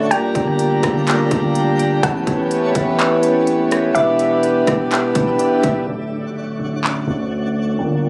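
Atmospheric cloud-rap hip hop at 125 BPM in 4/4 with a half-time feel, this floating, dreamy cut from a longer piece sits in D major, moving through Gmadd9, Aadd9, Em7 and Dmaj7. Up front, a reedy, breathing hand-pumped harmonium holds sustained chords, its dark tone shaped by sidechain pumping and a low-pass filter. Beneath it, a long sustained 808-style bass rings deep and sine-like, while warbly lo-fi synth keys play nostalgic arpeggios in the background through chorus, filter and delay. A soft, round pluck carries the melody from 0.1 seconds, and a twinkling granular texture adds bright, sparkling shimmer bathed in its own reverb. The electronic trap kit, also up front, brings a hard-clipped kick, crisp hats, handclaps and rim clicks until 7.0 seconds, and a filter sweep runs from 5.9 seconds to the end, all heard with the light room sound and club reverb of a phone recording.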